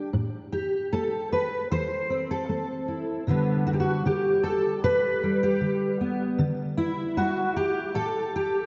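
A fingerpicked steel-string jumbo acoustic guitar sits up front, its ensemble chorus shimmering through a lush hall reverb in this melancholic, haunting folk excerpt in A dorian at 76 BPM, moving from Am through G/B to Dsus4 across E2 to C5 in a dreamy, reverb-soaked mix that tops out at 7.7 kHz.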